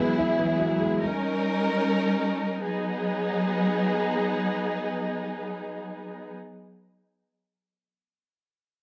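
Hip hop in free time and G# minor, this short excerpt carries a dark, menacing mood. A dark concert grand piano opens the passage with accompaniment, sounding mellow, intimate and boxy through a low-pass filter, with audible action noise and deep bass, before it stops at 1.0 seconds. A dark symphonic string section holds sustained chords from the start until 6.3 seconds, bowed and lush with vibrato, an expressive ensemble sound and a smooth top. Both parts sit up front, and the harmony moves from Eadd9 to D#7 and settles on G#m7 at 2.6 seconds as a new section begins. A moderate plate reverb lends a digital ambience, and the master is dense and heavily limited in a modern way.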